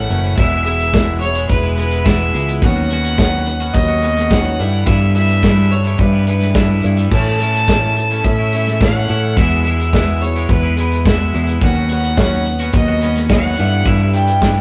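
A clear, earthy fiddle with light vibrato and slapback echo carries the melody from a distance over a jangly, open-road folk and heartland rock groove, built from a bright picked steel-string acoustic guitar with finger squeak, a twangy, compressed electric guitar riff, a dark, round fingered bass and punchy natural country drums with dark cymbals up front, while a reedy, breathing pedal harmonium and a jingly tambourine sit very quiet beneath, the rough rehearsal-room sound carrying warm saturation and moderate stone-room reverb as the chords move through E, Badd9/D#, G6 and A.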